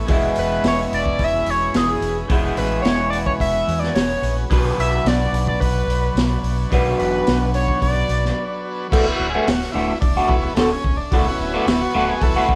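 A buzzy overdriven combo organ holding sustained chords, a slightly broken-up electric guitar riff through a phaser and a round fingered bass open this kaleidoscopic, trippy psychedelic rock excerpt at 109 BPM in D lydian, joined by a gritty, up-front breakbeat kit with a punchy kick and a screaming wave-folded synth lead carrying the melody until 8.6 seconds, before a short break at 8.4 seconds gives way to an organ solo from 8.9 seconds, all in a lightly reverberant room-live sound.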